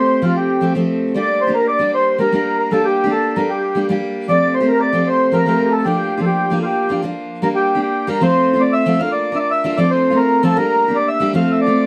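A reedy, close-miked accordion carries the melody up front in this wild, driving Celtic hornpipe cut from a longer piece, with a bright, full-bodied picked steel-string acoustic guitar, finger squeaks and all, picking the swung accompaniment beside it while an airy wooden flute with vibrato drifts in the background on a second line until 7.0 s, all set in a moderate studio reverb.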